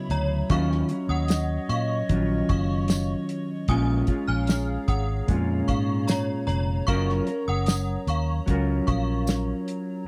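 A dry, close recording in a 1970s studio style, with little reverb, frames this sunny, nostalgic fragment of indie and bedroom pop, cut from a longer piece, at a relaxed 75 BPM in 4/4 and F# major. A cloth-damped, thuddy acoustic kit with a tight kick, a medium-tuned snare and hi-hat sits prominently, its top rolled off, while a foam-muted, fingered electric bass adds a round, amped low end up front. A mellow, clean electric guitar carries the accompaniment through a lush chorus and vibrato, beneath a warbly, lo-fi pad of detuned square, triangle and sawtooth tones that swells in slowly and holds sustained chords with chorus, phaser and its own reverb. An inharmonic FM synth chime rings out a second line with a fast attack and decay, dressed in ensemble chorus and slapback echo. A jingly tambourine joins softly at 1.3 seconds, and the harmony drifts from C#m11 and D#m9 through A#m7 before settling on F#maj7 at 6.9 seconds.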